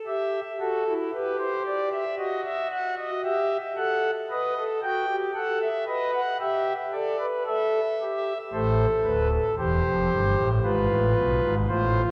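A solo pipe organ sounds from 0.1 s, its foundation stops giving a thick, up-front tone with a romantic voicing as it unfolds a solemn, contemplative four-part fugue in the baroque style. The organ spans from a deep D1 up to G5, and the slow, straight 4/4 pulse gives each voice room to breathe. The harmony moves through Em, D#dim/F#, B7, Em/G, Am and G#m6, a shadowed progression that deepens the sense of gravity. A long church reverb, lasting around 3.4 s, lets each chord hang in the air, while a worn cassette-tape quality adds a warbling pitch drift that makes the recording feel aged and faintly unsteady. The passage is cut from a longer piece and stops at 12.1 s, mid-thought.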